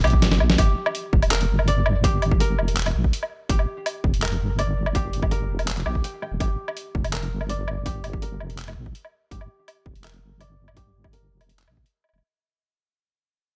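Woody, fingerpicked koto arpeggios open this tense, cinematic half-time drum and bass excerpt in G minor at 165 BPM, sitting low in the mix under a filter sweep and digital delay. They are joined at once by a deep, dark wobble bass of detuned sawtooth and sine tones thickened with chorus, and by a gritty, pitched-down sampler-style kit of handclaps, hi-hat, medium-tuned snare and woodblock, with a hard-clipped electronic kick arriving at 0.1 seconds. Both kits carry studio reverb. After a brief drum fill, the music fades out from 0.6 seconds to 12.2 seconds.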